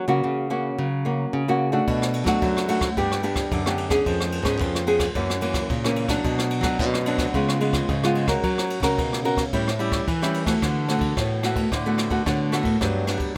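A fingerpicked nylon-string guitar leads the accompaniment, its small tone sitting up front in this playful, festive samba and choro excerpt at 110 BPM in a straight 4/4. Beneath it, a second nylon-string guitar, also fingerpicked, carries the bass line with a full-bodied, deep classical sound. At 1.9 seconds a jazz brush kit joins with a boomy kick, dark ride cymbal and rim clicks, its natural small-room character also placed close to the listener. The harmony starts on F# and moves through Bm7, G, C#7/E#, F#7, Bm, C#7, F# and A7 before a new section arrives at 10.6 seconds on D6, turning to Gmaj7. The recording is dry and intimate, with little reverb, and it cuts off at 13.4 seconds.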